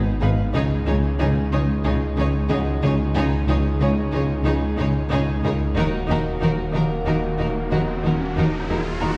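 A thick, detuned sawtooth bass with chorus anchors this vast, tense hybrid orchestral and electronic film cue at 92 BPM, joined by a mellow tuba, sustained dark French horn chords, woody bowed double basses, expressive cellos and a viola line touched with portamento, while two violin sections carry a smooth vibrato melody and a focused second line over a soft, felt-muted upright piano, the harmony moving from Abm through Dbsus2 to Ebm at 5.8 s before an electronic riser enters at 6.9 s, heard from further back in a wet scoring-stage reverb.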